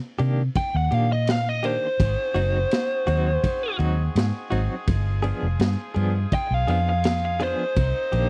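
A straight-eighth soul-blues groove in 4/4 opens this brooding, soulful excerpt, as a crunchy, saturated breakbeat kit with dark cymbals and a tight kick locks in with a round, foam-muted fingered bass and twangy, compressed clean guitar stabs shimmering with tremolo, while a biting lead guitar with overdrive and slapback echo carries the high melody from 0.6 seconds and a brilliant horn section adds sustained, octave-doubled chords from 2.0 seconds, all set in a dry, close 1970s-style studio sound.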